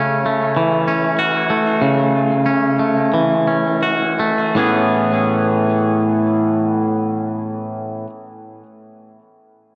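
Rock with a euphoric, soaring mood, this short cut from a longer piece features a lone twangy electric guitar playing clean, picked arpeggios from 0.0 to 8.1 seconds at a moderate pace, slowing down over the first 4.6 seconds. The compressed guitar sits up front, treated with tape echo and slapback echo. A lush hall reverb gives it a big arena sound as the harmony moves from A6/C# to Amaj9 at 4.6 seconds.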